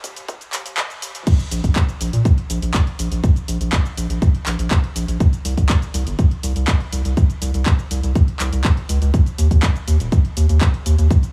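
A straight 4/4 pulse from a punchy, overdriven electronic kick drives this hopeful, expansive progressive house excerpt, with a house kit of bright hi-hats, cabasa, handclaps and crash cymbal adding layered, gritty sparkle that pumps with the sidechain. Up front, a round, deep analog bass blends square and sine tones into a dark, sustained low end with a fast attack, breathing to the same pump. A short build-up gives way to the drop at 1.3 seconds, all set in a small, digital room ambience.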